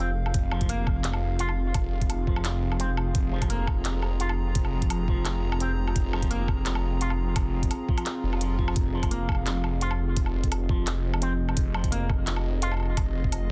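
A dark analog pad holds deep, nasal sustained chords with chorus and sidechain pumping, while a bright, twangy electric guitar through an envelope filter picks clean arpeggios with vintage 12-bit sampler grit and delay over a thick, swirling phased saw bass on F1, before a pitched-down, thumpy kick and a smooth-hatted electronic kit of handclaps, hi-hat and woodblock enter at 0.3 seconds to drive this tense, dark half-time drum and bass excerpt in F minor at 171 BPM, with a faint electronic swell appearing in the background at 8.2 seconds.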